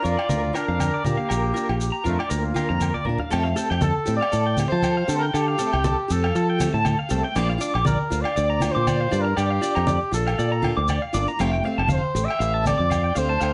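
A lightly swung 119 BPM groove in 4/4 drives this carefree, joyful highlife guitar band excerpt in F major. Growly fingered electric bass sits up front beneath maracas, ringing agogo bells and bright, low-tuned congas, while a picked steel-string acoustic guitar plays accompaniment and a twangy, slightly broken-up electric guitar plays arpeggios through tremolo and slapback echo. A veiled, forceful trumpet with bucket mute carries the jazz-style melody throughout, joined by a smooth-topped second trumpet with scooped notes only until 3.0 s, just before the harmony moves from Bb to Fadd9 at 3.3 s in a moderate studio reverb.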